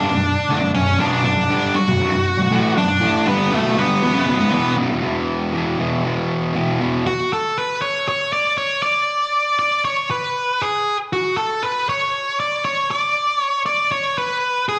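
A straight 4/4 at 118 BPM drives this brooding, angsty rock excerpt, heard live through a venue's PA with club reverb. A bright, double-tracked fuzz guitar riff sits up front over Bm, then moves to E5 at 5.0 seconds, while a dark octave-fuzz lead guitar carries the melody, both distorted and picked with slapback echo. The riff guitar drops out at 7.0 seconds, leaving the lead to play alone until the end.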